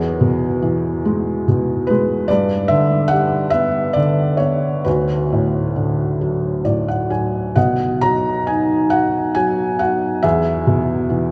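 The recording sits in a deep, wet cathedral reverb with a 5.0-second decay, its sound rounded off at the top as if captured in a church or concert hall. This short excerpt of a lyrical classical piano piece moves slowly at 45 BPM in 6/8, and its uneven beats and free rubato give it a peaceful, unhurried feel. A felt-muted upright piano plays solo throughout, tuned to A4 = 442 Hz and ranging from D2 to A#5. Its tone is soft and mellow, yet it stays intimate and up front against the long reverberant tail. The harmony drifts from E through G and D6 to B before settling back on E at 10.2 seconds. Around 6.2 seconds the piano adds a brief fill that carries into the B chord at 7.6 seconds.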